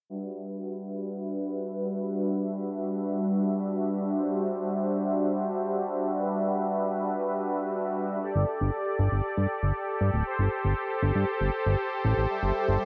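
A soft, smooth supersaw opens at 0.1 seconds with detuned unison chords through a phaser, moving from Em7/G to D7/G and Gsus2 in a romantic, nostalgic synthwave excerpt at 118 BPM in a straight 4/4, tuned to A4 = 441 Hz. At 8.4 seconds a fat, saturated analog bass enters up front with a fast attack and wave-folded edge, holding to the end at 12.8 seconds as the harmony reaches Am/G. A filter sweep runs throughout, and a moderate plate reverb frames the bright 1980s-style digital production.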